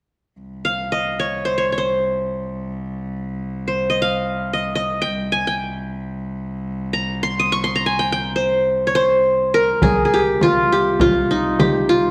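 Set in a wet recital-hall reverb, this excerpt of a Turkish makam ensemble has a longing, hypnotic mood, opening at 0.4 s with a single bowed cello holding a rich, low drone with vibrato beneath everything. Just after it, the up-front qanun carries the melody with a bright-edged, plectrum-plucked tone from its triple strings. A deep, large frame drum played with soft hands joins at 9.8 s and stops at 11.7 s.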